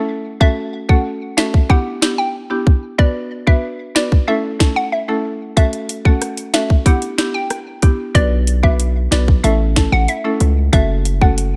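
Dancehall in B minor at 93 BPM, this short cut from a longer piece has a tough, hypnotic mood over a straight 4/4 pulse. A buzzing marimba struck with hard mallets sets out the accompaniment from the start, its woody, boxy tone dry and percussive, while a hollow square-wave pluck carries the melody between D5 and G5, bouncy and detuned with a chorus effect and a quick, decaying filter pluck. The island pop drum kit enters at 0.4 seconds and sits up front, electronic and produced, with a tight kick, sharp snare, rim clicks and metallic hi-hats. At 8.2 seconds a hard-hitting 808-style bass arrives, punchy and heavy, with a fast attack and a noise layer, ranging between F#1 and C#2. The chords cycle through F#m, Em7, Bm and A, and a digital ambience surrounds the mix.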